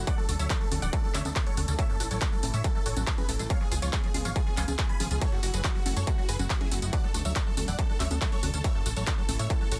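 A huge, bright, detuned supersaw lead carries the melody from the opening moment over veiled, con sordino strings holding lush chords in the background and a punchy, dark plucky analog bass, all three pumping with sidechain and the lead trailing a digital delay. This is driving, bittersweet uplifting trance at 140 BPM, moving through Dmaj7, A, C#7 and F#m7. A squelchy, resonant acid bass adds mellow chorused arpeggios with dub echo, while a distorted, overdriven kick sits up front beside an overdriven techno kit of congas, handclaps, hi-hat and tambourine, all inside a dense, heavily limited modern master.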